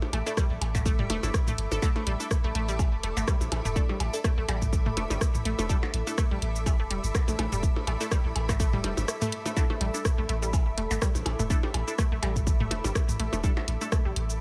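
A lightly reverberant mix opens this quirky, sparse minimal techno clip, cut from a longer piece and riding at 124 BPM in 4/4 with a 55% swing on the sixteenths around an Asus4 chord. A punchy electronic kick sits at the front alongside a deep sine sub bass with a pitch-drop attack and tube saturation, pumping against the sidechain. A house drum kit adds bright hi-hats, rim clicks and shaker, while tape-warm electronic percussion blips and toms, run through tape echo, fill out the groove. The riff comes from a juicy, squelchy resonant blip pluck built from detuned sawtooth with chorus and delay, and a muted filtered dub chord stab, given phaser and tape echo, hovers in the background. Above it all, a cloudy, evolving granular pad drifts high with slow attack and its own reverb, and a brief break between 9.1 and 9.6 seconds interrupts the steady pulse.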